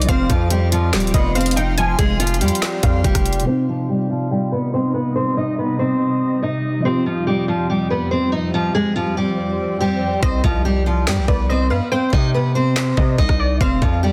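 A bright, fingerpicked steel-string acoustic guitar with fresh strings carries the melody up front through this menacing, melancholic half-time trap excerpt at 142 BPM in C harmonic minor, joined by a warbling, lo-fi detuned pluck on a chorused, delayed second line. A clean tine electric piano sits in the background beside a cloudy, evolving granular pad, while a knocking trap kit with woody snare, bright hats, claps and rim clicks drives alongside a heavy, saturated 808-style bass. Drums and bass drop away at 3.5 seconds under a filter sweep, a soft electronic swell rises at 9.1 seconds, and at 10.2 seconds the kit and bass return with the hi-hats muted as the piano and pad fall away, all in a dense, heavily limited mix.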